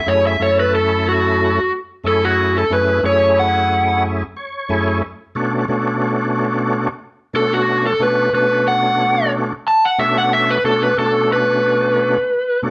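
Soulful and brooding, this short blues passage, cut from a longer piece, moves at 91 BPM in 4/4 with a light swing on the sixteenths. An overdriven electric slide guitar carries the melody as a solo throughout, its warm, gritty voice played with fingerpicks and sitting up front. A tonewheel organ supports it from 0.1 seconds, full and thick, lightly overdriven, with chorus vibrato and a slow-turning rotary speaker, and it steps forward with a brief fill from 4.0 to 5.0 seconds. The harmony rests on F#m7 before shifting to Bm7 at 5.0 seconds. The two players sound as though they are together in one room, wrapped in a moderate studio reverb, with a top end that rolls off above 10.8 kHz.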